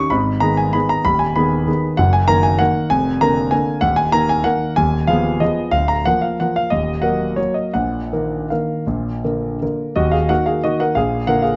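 Nostalgic and bittersweet, this brief classical piano waltz moves in a flexible, rubato three-beat lilt, cut from a longer piece and running about 11.6 seconds. A concert grand plays alone throughout, its clear, intimate tone set up front with a deep bass and the mechanical sound of its action audible. Close, detailed microphones capture the instrument naturally within a moderate recital hall reverb.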